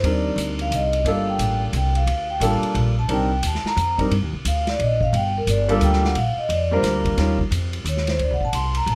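Swinging in a brisk 3/4 at 177 BPM, this moody, late-night small-group jazz piece in G minor features a ringing, metallic vibraphone solo over polished, up-front grand piano that drops out at 7.4 seconds, a woody, growly pizzicato upright bass, and a vintage drum kit with dark cymbals and a punchy kick in a pumping small room, set in a dry mix with little reverb.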